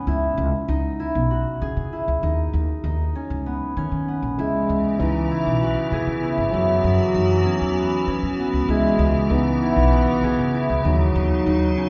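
Pensive and restless, this contemporary chamber piece moves in an uneven 7/8 at 195 BPM counted in eighths, with a straight feel in C# minor. From 0.0 s a fingerpicked concert harp spins ringing arpeggios up front, while a woody, growly pizzicato upright bass anchors the low end beside it. At 4.4 s a warm French horn enters in a classical solo style, carrying a second line. Just after, at 4.7 s, an icy glass pad fades in slowly with airy, crystalline sustained chords, shimmering through chorus and its own reverb. The harmony circles C#m7, D#5, F#7sus4 and D#m7, and a wet, hall-like reverb with a softened top end gives the fragment, cut from a longer piece, a spacious, churchly glow.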